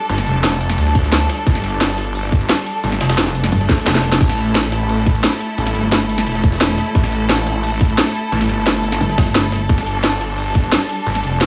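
A bright symphonic string section opens this dark, technical drum and bass excerpt, its bowed, lush ensemble holding sustained chords with biting vibrato and a sidechain pump that keeps the tense, aggressive mood pressing forward. A snarling distorted saw bass arrives almost at once, growling low and up front with detuned unison saws, a resonant moving notch and tube-saturated grit. Two kits drive the straight 4/4 groove: a produced, up-front drum and bass kit with a cracking snare, crisp hats and crash, and a gritty, pitched-up jungle sampler-style kit sitting in the background, its high-tuned snare, ride and hats filtered and re-recorded in a large room. A tight, layered electronic kick joins at 1.0 s. Around 3.6 s a very quiet electronic swell and a drum fill lead into a move from G5 to A5 harmony, while a pulsing, mellow pluck wobble bass with chorus surfaces briefly there and again near the close. 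A light small-room reverb holds the mix together.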